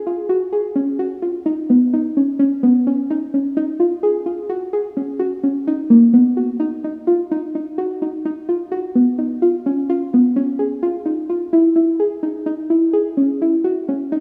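Progressive instrumental in 9/8 at 256 BPM counted in eighths, this driving, tense excerpt features a lone soft, round pluck synth that sits up front from 0.1 seconds, ranging from A#3 to G#4. Its full-bodied, dark tone has a fast attack and decaying tail, thickened by chorus and digital delay. A wet plate reverb and small room ambience give the rough home demo mix its space as it moves into a new section at 5.2 seconds.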